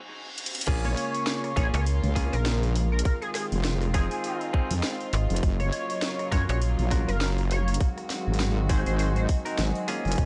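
A heavy, saturated wobble bass drives this gritty, funky glitch hop excerpt, bursting in at the drop at 0.7 seconds after a reverse cymbal and drum fill, joined by a tight, up-front electronic kick, a drum kit with a cracking snare, crash, hi-hat and rim click, bright, clean semi-hollow guitar stabs with dub echo, an edgy, tearing sync lead, a snappy slap-like FM bass from 1.7 to 6.8 seconds, and, in the background, a rich chamber string section roughened by sampler grit and sidechain pumping beside a warbling, nostalgic tape-like pad.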